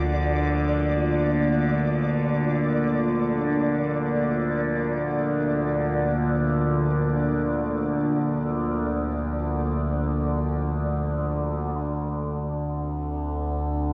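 Dark ambient drone in free time, cavernous and desolate, cut from a longer piece. An up-front drone with moving overtones and a resonant edge, treated with chorus and phaser, sits under a deep, moody pad of wave-folded, ring-modulated sustained chords that shift from Bb to Dm7 at 11.8 seconds. A grainy, flickering granular texture hovers in the background until 11.8 seconds, all bathed in a huge, wet reverb with a dark, rolled-off top.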